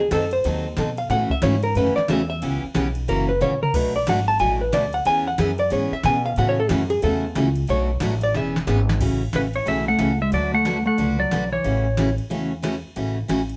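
A live, one-room sound with moderate studio reverb frames this down-home, playful western swing country tune at 182 BPM in A major with swung eighths, where a dark, clean hollow-body jazz guitar solos from 0.0 to 9.0 seconds over a woody pizzicato upright bass, a bright, full-bodied picked acoustic guitar and a dry, soft vintage rhythm box with a deep kick, crisp snare and metallic hats that drops in fills, before a twangy, compressed lap steel slide guitar takes the melody from 9.4 seconds.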